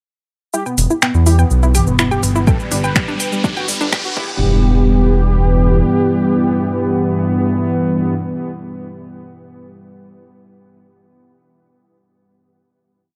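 Melodic techno at 124 BPM in E minor, hypnotic and melancholic, builds from 0.5 seconds: a nasal, warbling unison lead repeats a sixteenth-note riff over a pedal note, an analog pluck cycles a bright three-step arpeggio that drifts against the bar under a filter sweep, and a layered, overdriven techno kit of shaker, snaps, hats, low tom and crash sets the groove, while brassy synth stabs with tape echo sit up front over a round, dotted-rhythm analog bass, all pumping against the sidechain. From 1.9 seconds a riser climbs and a deep, moody pad fades in behind, and a punchy four-on-the-floor kick joins at 2.5 seconds as the harmony moves from Em to G. The build ends at 4.4 seconds in a final hit carried by the lead, stabs and pad, all in a dry, gritty hardware sound.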